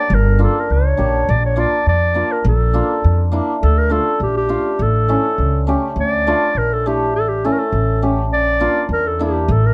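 Bittersweet yet festive, this short klezmer passage in 2/4 is led by a mellow, classical-style solo clarinet with a soft attack and smooth top, sitting up front from the very start. A woody, thumpy pizzicato upright bass with steel strings joins at 0.1 seconds, and an acoustic hammered dulcimer enters at 0.4 seconds with shimmering, ringing accompaniment, all three parts close and present. The dark, warm production carries light reverb, and the music shifts into a new section at 6.0 seconds, moving from G minor colours toward D and A before settling on Bb.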